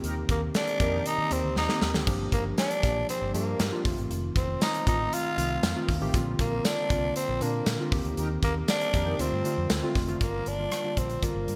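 A nostalgic, urgent slice of 1980s-style pop moves at a straight, steady pulse, its bright digital sheen wrapped in a moderate plate reverb. A growling tenor saxophone carries the melody from 0.3 seconds, raspy and gritty with a light vibrato, sitting up front and trailed by shimmer reverb and delay. Beneath it, detuned analog keys with a square-and-sawtooth character and a filter sweep play round, decaying chords through chorus and shimmer reverb, while a dark, foam-muted fingered electric bass adds a punchy, amped low end. A big rock drum kit with a punchy kick, medium-tuned snare, rim click, hi-hat, tambourine and bright splash cymbal fills a big room with gated reverb, and a drum fill arrives just before the band accents give way at 2.1 seconds. Very quiet, brassy synth stabs with ring modulation and vibrato appear only at the opening and again at 8.2 seconds, marking the accents as the harmony moves from Eb6 through Gm7, F7, Bbadd9, Eb6 and Dm7 before returning to Gm7 for a brief new section at 10.2 seconds.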